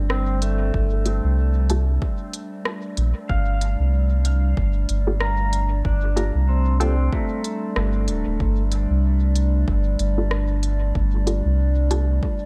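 A warbling, detuned pad holds a lo-fi, nostalgic Gm9 chord from the opening of this deep, spacious ambient dub excerpt. It is joined at once by muted, chorused sawtooth chord stabs with dub echo and a round, soft sub bass that sits up front with tube saturation. Within the first second, smooth electronic hi-hats, rim clicks and an overdriven, layered kick settle into a swung groove. Meanwhile, a clean, fingerpicked pedal steel guitar plays slide arpeggios with volume swells until 8.6 s, all within an echo-heavy digital ambience.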